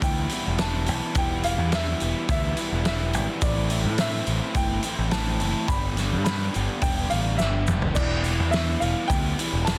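A straight, steady 4/4 pulse drives this bittersweet, cool slice of indie rock, cut from a longer piece and built on a loose acoustic drum kit with a fat snare, punchy kick and gritty, saturated character that sits up front in the mix. An overdriven electric bass growls along prominently, its picked tone bright and direct, while a tube shaker adds a grainy, mellow texture from the background. Two guitars carry the riffs: a crunchy overdriven one with a warm, picked edge, and a thick fuzz guitar set further back, colored by distortion, analog chorus and a slapback echo. Over the top, a brilliant, woody upright piano plays the melody in a high register, its short-sustaining notes touched with slapback echo. The harmony moves from Em7 through Am7 to G before a drum fill at 7.4 s brings the progression back to Em7 at 8.0 s. Light reverb and a dense, heavily limited modern master give the whole passage a loud, compact finish.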